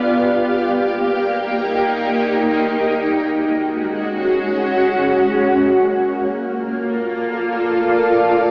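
Weightless and luminous, this ambient fragment in free time is cut from a longer piece and centres on a bright, up-front granular cloud pad whose blurred, detuned sustained chords drift from Ebmaj7 through Gbsus2 to Bbmaj7 and G7, carrying their own reverb and a cassette-tape patina. A deep, round sub bass sits very quietly beneath it until 5.3 seconds, when the pad carries on alone to the close at 8.5 seconds. The whole has the homespun character of a cassette recording with an AM radio colour and a small, wet room.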